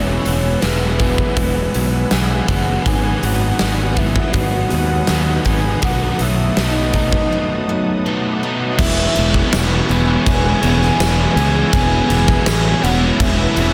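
A huge, punchy arena drum kit sits up front from 0.3 seconds, its bright cymbals and softly clipped snare ringing in a pumping hall sound, over a growly fuzz bass in this wistful, dreamy shoegaze and dream pop excerpt at 81 BPM in E major. A round, octave-layered synth lead carries the melody through chorus, phaser and tape echo, while a brassy, warbling analog pad sustains chords in the background, and a boxy, shimmering twelve-string acoustic picks quiet arpeggios alongside riffs from a crunchy overdriven guitar with ensemble chorus and a dark, slightly broken-up guitar through a small old amp. At 8.8 seconds a second, double-tracked overdriven guitar joins on a low riff, and a jingly tambourine adds texture from 9.5 to 12.6 seconds, all within a small room and a dense, heavily limited master.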